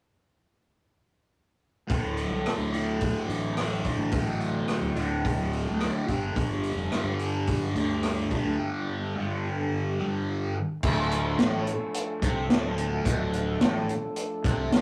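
A rough rehearsal-room recording with saturated grit and a small room's reverb carries this trippy, mysterious slice of psychedelic rock. From 1.9 seconds a thick, bright, double-tracked fuzz guitar riff coated in phaser sits up front over a growly, overdriven fingered bass and a vintage acoustic kit with a punchy kick, a high-tuned snare, rim clicks, hi-hat and crash, its top rolled off. After the riff moves from D5 to G5, the harmony settles on D minor at 10.8 seconds as a mellow, overdriven combo organ with light vibrato enters on sustained chords, playing through to the cut at 14.8 seconds.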